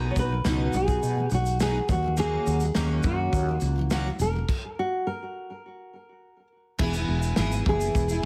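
A thumb-plucked nylon-string guitar carries the melody up front, its deep classical tone touched with audible finger squeak and treated with a digital delay. Beneath it, a full-bodied, double-tracked steel-string jumbo acoustic guitar is picked as accompaniment, while a growly, hollow-body fretless electric bass with a woody character sits up front, direct and amped. A natural country drum kit recorded in a studio room supplies a punchy kick, a medium-tuned snare, crash cymbal and shaker. The harmony moves from B to D#m7, then a stop at 4.5 seconds suspends the chords until an E arrives at 6.8 seconds, opening a new section. This carefree, heartfelt acoustic pop fragment in a straight 4/4 feel is cut from a longer piece, with light reverb and a heavily compressed radio sound.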